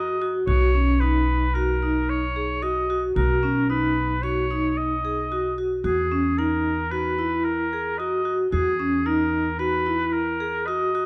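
Hopeful yet restless, this short contemporary chamber excerpt in an uneven five-beat meter sets a clear, lightly vibratoed oboe melody over ringing, metallic vibraphone arpeggios with motor vibrato and woody pizzicato upright bass, all three playing throughout as the harmony shifts from Badd9 to Emaj9#11 at 5.8 seconds within a dark production and moderate scoring-stage reverb.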